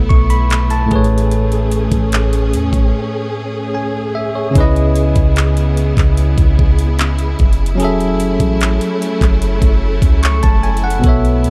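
Longing and late-night in mood, this short cut from a longer contemporary R&B piece moves at 74 BPM, with a bell-like tine electric piano up front over lush, bowed studio strings holding sustained chords, a deep, boomy 808-style bass, and an electronic trap kit of knocking kick, metallic hi-hats and handclaps entering at 0.1 seconds, all in a dark, dry production that passes through a break from 2.9 to 4.6 seconds as the chords drift from B7sus4 and Amaj7 to C#m7 and F#m7.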